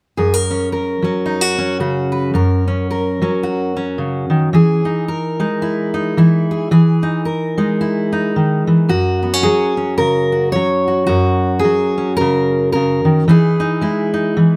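Folk in a solo fingerstyle vein, this hopeful fragment of a longer piece features a lone fingerpicked steel-string acoustic guitar with a dreadnought body, heard from 0.2 to 14.6 seconds. The guitar sits up front and close, its warm, detailed tone captured with little room sound, while a slapback echo adds a short repeat to its notes. In 4/4 with a gentle swing on the eighth notes, the playing spans from a low F# up to a high C#. The opening passage moves from an F# chord to an Emaj7#11 color. At 8.9 seconds a new section returns to F#, then closes on a rootless C#madd9 over E.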